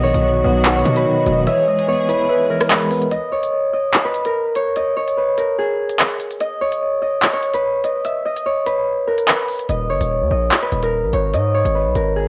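Menacing, cold drill hip hop in Eb phrygian at 146 BPM with a half-time feel, led by an up-front, fingerpicked Celtic harp ringing through delay over crisp electronic hats, handclaps and rim clicks, while a soft, hollow, woody synth lead, a worn, slightly out-of-tune tine electric piano with fast tremolo and a distant, biting string section drop out at 3.1 seconds, and a heavy, distorted 808 bass hits at the start and returns at 9.7 seconds, all wrapped in a dull, home-cassette sound with light reverb.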